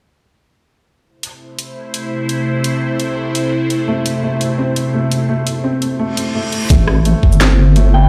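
A big, roomy mix with large studio reverb frames this heavy, cinematic half-time drum and bass cut in A minor at 170 BPM. A tense, string-like drone with phaser and sidechain pumping holds sustained chords over an overdriven kit of cracking snare, bright hats, rim click and shaker, while a muted felt upright piano with tape echo and audible action noise adds intimate arpeggios from 3.9 seconds. A reverse cymbal leads into the drop at 6.7 seconds, where a deep, dark wobble bass with chorus and a knocking electronic kick sit up front, and a soft FM synth bell with a vintage warble touches a G5 at the close.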